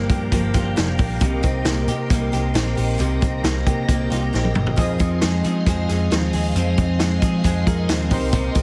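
A straight 4/4 beat at 135 BPM from an up-front vintage drum kit with a punchy kick, broken by a fill at 4.3 s, drives this restless, bittersweet jangly indie pop in C minor, where a dark, foam-muted picked electric bass sits under twangy, slightly broken-up electric guitar arpeggios from a small old amp with tape echo, a woody steel-string acoustic guitar, a swirling phased string machine holding sustained chords, and, from 4.8 s, chorused analog keys in the background, the mix carrying light reverb and a heavily compressed radio sound.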